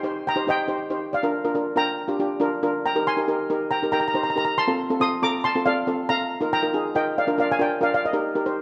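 A lead steel pan, dark and smooth under soft rubber sticks, carries the melody up front in this festive, bouncy calypso fragment cut from a longer piece. Beneath it, a double seconds pan plays shimmering accompaniment with a vintage, band-limited colour, moving from C minor through Bb, Eb and F to a Bb7sus4 and then Bb before settling on Eb at 8.0 seconds. Close, detailed miking catches the metallic ring of both pans, set in a moderate concert-hall reverb.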